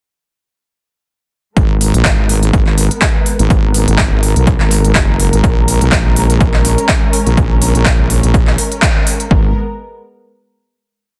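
Swaggering and bouncy, this swung bass house piece drops in at 1.6 seconds with a punchy, overdriven four-on-the-floor electronic kick, crisp programmed hats and backbeat handclaps from a big-room dance kit, an up-front, saturated sawtooth wobble bass whose wobble speed keeps changing, and a dark, woody studio string section holding lush, sidechain-pumped chords beneath, inside a dense, heavily limited, dry mix that hits a band accent at 8.8 seconds before settling on a final chord from 9.3 seconds.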